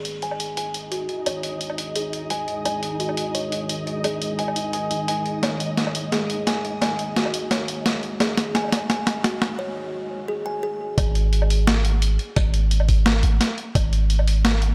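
Half-time drum and bass at 173 BPM, this heavy, tense excerpt builds for 11 seconds before dropping into its final stretch. A woody, thumbnail-plucked kalimba opens with close-miked arpeggios under a low-pass filter sweep and tape echo, while a long, mellow 808-style bass holds G#1 beneath it from the start. A deep, moody sawtooth pad with chorus and sidechain pumping sustains dark chords from 1.5 s, and a grainy, flickering granular texture hovers in the background. The gritty boom bap sampler-style kit, with its high-tuned snare, hi-hat and woodblock, sits up front and plays a fill before a brief break at 9.6 s. At 11.0 s the drop arrives with a compressed, thumpy electronic kick joining the kit and bass, all set in a light digital ambience.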